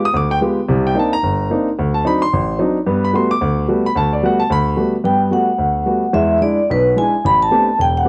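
Jazz at a brisk 220 BPM in 4/4 with a light swing on the eighth notes, this short excerpt in G major feels sophisticated yet relaxed. A warm baby grand piano carries the accompaniment from the start, sounding present and polished with a short sustain, its range stretching from deep bass to high treble. At 5.1 seconds a vibraphone struck with medium hard mallets takes up the melody, metallic and ringing with a medium motor vibrato and a slapback echo, sitting up front alongside the piano. The harmony moves through rich extended chords such as G7b9, Cm9 and Gmaj9 before shifting to E7 and Am11 near the close. The sound is dry and close, like a 1970s studio recording with a touch of studio reverb, and the passage is clearly cut from a longer piece.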